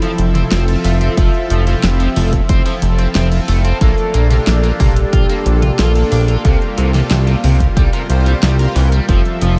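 A straight 4/4 pulse at 91 BPM drives this nostalgic, uplifting synthwave excerpt in F major: a pop drum kit with a fat snare and bright hats is joined at 1.2 s by a punchy, up-front electronic kick, while a thick, detuned sawtooth analog bass with tube saturation and sidechain pumping sits forward under a swirling phased pad, glossy chorused polysynth stabs with analog delay, a biting double-tracked overdriven guitar riff, and a round, dark octave-layered lead melody with vibrato and diffuse ambient delay, all moving through Fmaj7, Bbmaj7 and C7sus4 in a light reverb.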